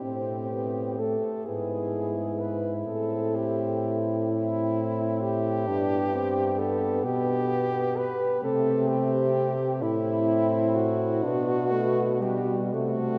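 Serene and lyrical, this slow classical excerpt for horn quartet moves at 43 BPM in a rubato 6/8, settling into G major from 5.7 s. A clear, up-front French horn carries the melody with light vibrato over a distant, roomy second horn and a background accompanying horn, while a mellow, present horn plays the bass, all heard in a vast cathedral reverb.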